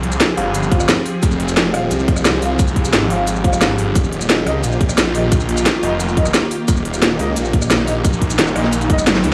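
A tight, up-front mix with small-room ambience and a gritty, sampled edge opens this tense, dark technical drum and bass excerpt at 176 BPM, where a snarling, detuned sawtooth bass growls under distortion and sidechain pumping while a swarming, wave-folded drone sustains granular chords in the background, moving from Fmadd9 to Eb at 4.0 seconds. A layered kit with a cracking snare, crisp hats, rim clicks, shaker and toms drives throughout, joined by a tight electronic kick from 0.7 seconds, and a shadowy brass section places classical-style stabs through dub echo. The kick drops out at 9.1 seconds as a drum fill closes the passage.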